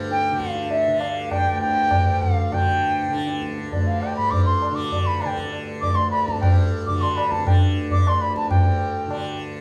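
An airy, reedy bansuri sits up front, carrying a tongued melody with vibrato in raga Bageshri on D. Low-tuned, ringing tabla keep a straight 5/4 cycle at 100 BPM, while a softly plucked tanpura drone buzzes and shimmers beneath from 0.0 to 9.6 seconds. This introspective, meditative Hindustani classical passage is cut from a longer piece, played live in one room and bathed in a wet, large studio reverb.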